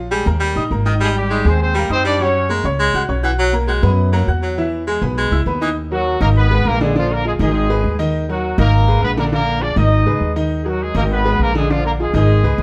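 A boxy, short-sustained grand piano and a woody, thumpy pizzicato upright bass on gut strings set a fiery, driving Latin groove in Eb minor at 202 BPM, with a roomy baritone saxophone carrying a vibrato-laden second line until 5.7 seconds. A vintage-sounding horn section with light vibrato and octave doubling states the melody briefly, then returns at 5.9 seconds as the music settles into a cycle of Ebm, Abm and Bb7. The close, detailed sound carries a light reverb in this short cut from a longer piece.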